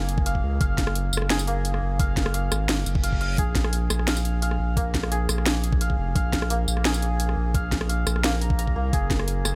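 A dry, up-front mix opens this dark, spacious half-time drum and bass excerpt at 173 BPM, where a shimmering hammered santur with 12-bit sampler grit and tape echo spins arpeggios over a deep, tube-saturated sine sub bass, a knocking electronic kick and an overdriven, layered kit of cracking snare, bright hats, rim click and tambourine, while a reverse cymbal sounds from 2.9 to 3.4 seconds as the harmony shifts from Gbadd9 to Bb5.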